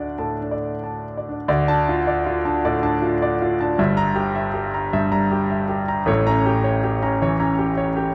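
Flowing in a rubato 4/4 at around 90-109 BPM, this passionate, bittersweet romantic character piece for solo piano in D minor opens on a D5 and moves through Dm, Edim/G and an A7b9 that arrives at 6.1 seconds. The grand piano sounds clear, intimate and polished, placed up front with long sustain and audible action noise, spanning G1 to Bb5. A moderate recital hall reverb and a dark, warm production frame this short passage cut from a longer work.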